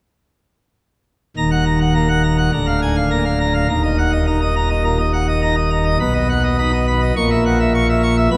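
Majestic and stormy, this short passage from a longer classical organ toccata moves at 104 BPM in a straight 4/4, set in E-flat minor and tuned to A4 = 439 Hz. A single pipe organ plays solo on a full plenum, spanning from a deep D1 up to D-flat 6. Its baroque voicing is brilliant, with bright mixtures and an audible chiff at the start of each pipe's speech, and the instrument sits up front in the sound. The harmony moves from E-flat minor through B-flat seven over D and back to E-flat minor, then turns to B major at 6.0 seconds before arriving on G-flat seven over B-flat. A wet church acoustic with a 3.5-second reverberation surrounds the organ, and the playing runs from 1.4 to 8.4 seconds before the cut.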